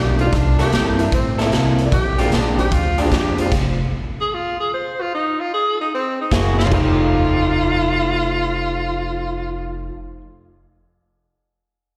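Electric blues shuffle, rollicking and gritty, cut from a longer piece and heard as a live gig through the venue's PA in a reverberant recital hall, where a breathy, subtone tenor saxophone with vibrato, scooped notes and slapback echo leads over a slightly broken-up, lo-fi guitar riff from a small old amp, a woody, thumpy pizzicato upright bass, a dark grand piano in the background and a punchy, saturated garage drum kit, with every part but the saxophone halting for a stop at 3.5 seconds before a drum fill at 6.5 seconds, after which a very quiet, mellow upright piano with long sustain adds a second line from 6.7 seconds.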